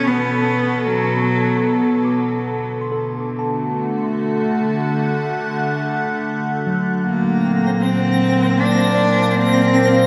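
A clear, focused bowed cello with vibrato and delay sings a brief opening phrase up front and returns at 7.0 seconds in this spacious, serene ambient passage in free time, cut from a longer piece, floating over a morphing, detuned wavetable pad with chorus that holds sustained chords moving from Bm7 through D to Bbadd9, while a bright tine electric piano with tremolo and delay fades in gradually with arpeggios in the background, and a twinkling granular texture with an octave-up shimmer enters at 7.4 seconds, the whole recording washed in a long cathedral reverb.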